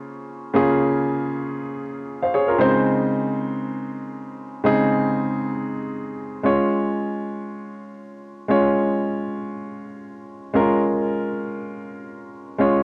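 In free time, this short, nostalgic and romantic pop excerpt in D-flat major features a lone baby grand piano, clear, present and polished up front in a modest small-room ambience with a cassette home-recording character, moving from Bbmadd9/Db to Ab/Db at 2.6 seconds before settling on Db at 6.4 seconds.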